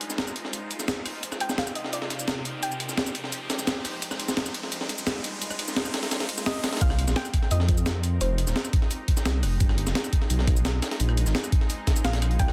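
Soulful and dreamy, this liquid drum and bass fragment opens with a shimmering, ethereal ambient pad holding sustained chords, gritty tape-warm breakbeat kits with hi-hat, rim click, shaker and snare, and a background riser, joined moments later by a thumpy electronic kick, while a soft round pluck with dub echo plays brief melodic phrases under a filter sweep, until the drop at 6.8 seconds brings in a deep, rumbling detuned saw bass up front, all in a dense, heavily limited modern master.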